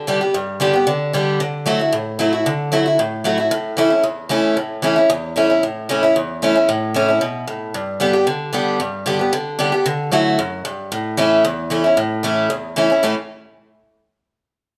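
A picked acoustic archtop guitar opens this driving, lively bluegrass excerpt on its own and carries it alone until 13.1 seconds. The tempo is a brisk 227 BPM in a straight 4/4, centered in A mixolydian with the tuning set to A4 = 437 Hz. The guitar sits up front with a bright, boxy tone, ranging from E2 up to G4. It moves through G, Dadd9 and A, then circles back to G at 7.7 seconds before the same chords return. A moderate large studio reverb gives the picking a sense of open space around it.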